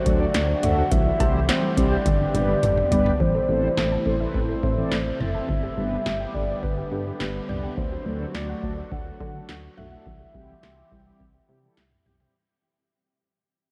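Soaked in a huge, dreamy reverb, this driving yet melancholic synth-pop cut at 105 BPM sets a full, detuned synth lead with vibrato, chorus, phaser and tape echo over a swirling phased analog pad, gentle arpeggios from a soft, round pluck, mellow sawtooth synth brass and a punchy, dark FM bass. An up-front analog drum machine with deep kick, metallic hats, toms and cowbell plays a fill at 2.1 s before the fade-out begins at 3.2 s.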